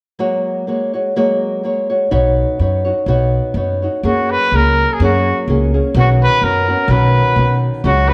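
A lightly swung 2/4 pulse at 125 BPM drives this festive, proud mariachi-style Mexican folk excerpt in F# major, opening on a dark, small-sounding fingerpicked nylon-string guitar that alternates F#add9 and Badd9 chords. A woody, thumpy pizzicato upright bass with gut strings joins at 2.1 seconds, and at 4.1 seconds a clear trumpet takes the solo melody in a classical style, its vibrato and soft attack sounding distant and roomy. A wet recital hall reverb surrounds the brief fragment, which is cut from a longer piece.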